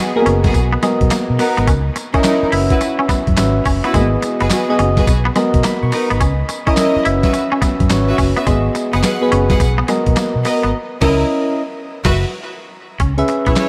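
A swung sixteenth-note groove at a bouncy, slick new jack swing R&B pace is driven by a gritty, pitched-down boom bap sampler-style kit with thumpy kick, medium-tuned snare, hi-hat, handclaps, tambourine and crash, over a dark, foam-muted fingered bass, while soft, mellow electric-piano-like synth keys with chorus and tremolo carry the chords, lush bowed strings add stabs through digital delay, a bright, twangy clean guitar picks a riff, and a band accent at 10.7 seconds leads into a keys fill at 11.3 seconds and a break at 11.9 seconds in this excerpt from a longer piece.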